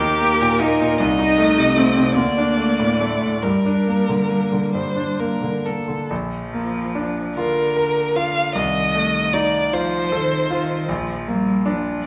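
Melancholic and yearning, this slow romantic piano trio movement in 6/8 drifts with rubato at around 42-52 BPM, opening in G minor before turning to Bb major at 6.1 s. A clear, focused violin with vibrato carries the melody up front until 10.9 s, while a smooth, even cello with its own vibrato plays a second line beneath. The bright concert grand piano, brilliant with deep bass and short sustain, supplies the accompaniment, all set in a wet recital hall.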